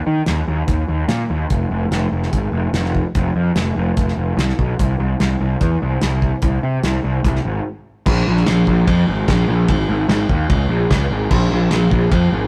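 A fuzzed, growly picked electric bass opens this gritty, swaggering classic rock excerpt, soon joined by an up-front, cloth-damped drum kit with a thuddy, tight kick, dark cymbals and a rolled-off top, the pair pausing for a brief break at 7.7 seconds before moving into a new section in a rough rehearsal-room recording with a moderate stone room reverb.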